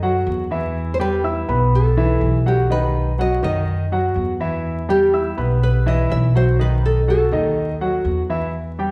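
Vinyl crackle and a lush church-like hall reverb frame this sultry, danceable Cuban son and guajira fragment, where a smooth, vintage grand piano rolls arpeggios up front over a dark, woody pizzicato upright bass, and a fingerpicked nylon-string guitar with old strings enters at 0.9 s to carry the classical-style melody over a simple Em, B and B7 progression.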